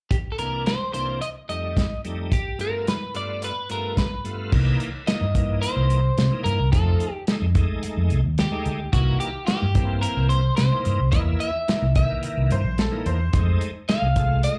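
Heard as a live club gig through the venue's PA, with little reverb, this soulful, gritty excerpt of straight-eighth soul blues at 109 BPM opens with a twangy electric guitar at the edge of break-up carrying the melody over a tight, mid-forward soul drum kit, while a shouting tonewheel organ with overdrive, chorus vibrato and slow rotary speaker fills in from 0.4 seconds. At 4.5 seconds a dark, foam-muted fingered electric bass enters as the harmony moves from C7, F7 and G7 to sharper C7#9 and F7#9 chords. A brilliant, slightly detuned upright piano adds a brief second line with slapback echo at 12.5 seconds.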